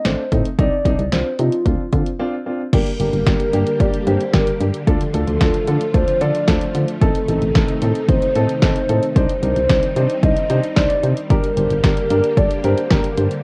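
A home cassette recording with light digital reverb carries this melancholic, cool synth-pop excerpt in G minor at 112 BPM, where a hollow, woody clarinet-like synth lead with chorus and vibrato sings the melody over a dark, mellow baby grand piano, a solid, round FM bass and an up-front analog drum machine with punchy kick and snare, until a brief break at 2.2 seconds gives way to bright, sawtooth string-machine violas with ensemble chorus entering at 2.7 seconds.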